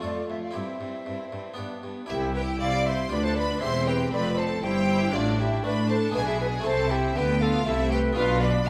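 Festive and lively, this short cut from a longer classical piece moves in a baroque-style concerto manner at 118 BPM in 3/4, set in C major with a straight feel. A pure, expressive concert flute with soft-attacked vibrato carries the melody alongside a distant, smooth violin section, while a second violin section plays a second line and a lush viola section with a smooth top fills in the accompaniment. Beneath them, a focused, close cello section holds the bass from the start, joined at 2.1 seconds by a double bass section that deepens the low end. A bright, plucked harpsichord in the Italian style sits in the background, adding its accompaniment across a broad range. The harmony passes through chords such as G7/D, Am and E7/B before ending on a rootless G7 at 8.2 seconds. A wet recital hall reverb gives the ensemble a spacious, ringing setting.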